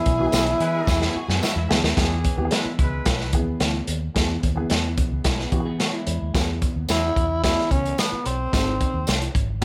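Uptempo 1960s-style soul at 110 BPM in E major, this short, warm and danceable excerpt is cut from a longer piece and opens with a band accent, with a drum fill arriving at 0.9 seconds. A growling tenor saxophone carries the melody up front, raspy and breathy with scooped notes and subtone, stating a phrase at the start and returning at 6.9 seconds. Behind it, a bright, lush violin section and a distant, roomy horn section with light vibrato supply brief second lines, while a twangy, slightly broken-up electric guitar through a small old amp picks a riff in the background. A dark upright piano with woody tone and audible action noise keeps up the accompaniment throughout, over a round, punchy, foam-muted fingered electric bass. The crunchy breakbeat drum kit sits forward with a tight kick and gritty, saturated character, joined by a jingly tambourine, all wrapped in moderate studio reverb as the harmony moves from E to G# near the end.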